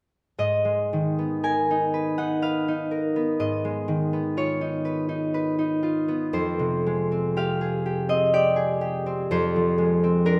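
This classical piece for solo concert harp carries a wistful, gentle mood, moving in a slow triple metre with uneven, rubato beats that let the phrasing breathe. The harp plays alone from 0.4 to 10.4 seconds, its bright, ringing tone sitting up front, with fingerpicked notes spanning from the low F2 up to G#5. The harmony drifts through rich ninth colours, opening on G#madd9, passing to C#9/G#, then Fmadd9, and arriving on A#9/E# near the close. A moderate reverb, like that of a scoring stage, lends the notes a two-second halo of space around the instrument. Cut from a longer piece, this brief passage feels like a reflective moment suspended mid-thought.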